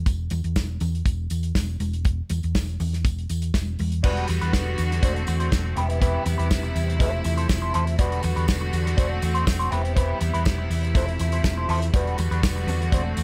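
This driving, danceable disco excerpt opens with a dry, damped drum kit and a round, punchy hollow-body bass, both up front, alongside ringing congas and a jingly tambourine that sits in the background. The kit's tight kick, medium-tuned snare, dark cymbals and hi-hat set a straight, steady dance groove, while the amped bass stays low and dark in its range. At 4.0 seconds the congas drop out as a clean, fingered semi-hollow guitar with wah and a bowed studio string section arrive together. The strings hold sustained chords with light vibrato, a biting, intense body and a smooth top, while the guitar adds shadowy accompaniment in its middle register. The harmony cycles through Gmaj7, D7, Cmaj7 and Fmaj7, all over an E in the bass, and the congas return, very quiet, at 11.9 seconds, all inside a small room ambience.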